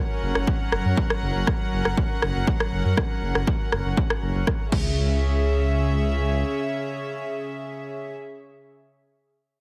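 Driving and cinematic, this melodic techno fragment, cut from a longer piece, moves at 120 BPM in a straight 4/4. A rich symphonic string section holds sustained, bowed chords with a soft, floating sul tasto tone from the very start, pumping against the sidechain as the harmony shifts from F# to C# minor at 4.7 seconds. A dark detuned saw bass rumbles deep beneath, its beating sawtooth edge blended with sine weight and a fast attack, also pumping and sitting up front. A punchy, tape-tinged electronic kick drum and a layered techno kit with crash cymbal and rim click drive the groove, both carrying the character of a re-recording in a small room, until the percussion stops at 4.8 seconds. The whole mix has a heavily compressed, radio-like sound with light reverb, and the strings carry on until 8.1 seconds, outlasting the bass, which stops at 6.4 seconds.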